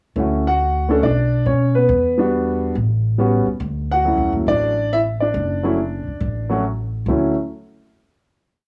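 A grand piano and a pizzicato upright bass start together at 0.2 s in a relaxed, playful swing jazz trio piece, with the piano carrying a motif-based melody of call phrases, partly doubled in octaves, over syncopated comping with rootless voicings on a Dmaj9, Bmadd9, Em7, A13 turn. The gut-strung bass sits up front in a woody, thumpy two-feel, while the piano has a warm, natural tone colored by cassette tape and plate reverb. Everything has the intimate feel of a home cassette recording in a small booth-like room, and both parts stop at 7.3 s.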